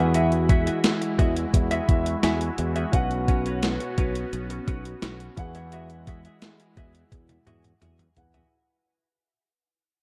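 Nostalgic and romantic, this short cut of 1980s-style pop moves at an unhurried, straight 4/4 pulse and fades throughout its brief length. A clean 12-bit drum machine sits up front with a thumpy kick, medium-tuned snare, hi-hat and toms, sounding sampler-like and tape-tinged as if re-recorded in a small room, and it closes with a fill from 7.1 seconds. Beneath it, a growly, bright fretless electric bass sustains its low notes with subtle chorus. A concert grand piano with deep bass and long sustain carries the accompaniment through a shimmer reverb, adding a fill at 1.5 seconds. A clean, compressed electric guitar plays a picked riff drenched in lush chorus and digital delay, while a swirling, detuned sawtooth pad with slow attack and long release holds phased, chorused chords. The harmony moves from Eadd9 to Bsus2 and back, all set in a dark, warm production with a moderate plate reverb.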